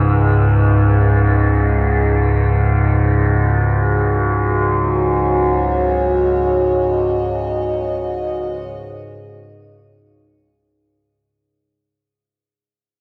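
Unmeasured and free-floating in time, this short dark ambient fragment feels unsettling and ominous from its first moment. A low, resonant drone sits up front, its sawtooth and sine tones carrying slowly moving overtones that keep the sustained sound evolving, thickened by chorus and its own built-in reverb. Alongside it, a bronze singing bowl struck with a felt mallet rings very quietly, its metallic, meditative tone marked by slow beating. At 3.0 seconds a deep, moody analog pad enters on sustained chords, blending detuned square, sawtooth and triangle waves with a sub octave and a moving notch, also given chorus and placed up front. Everything is soaked in a lush hall reverb for a dreamy mix, and the piece, cut from a longer work, fades out from 5.6 seconds onward.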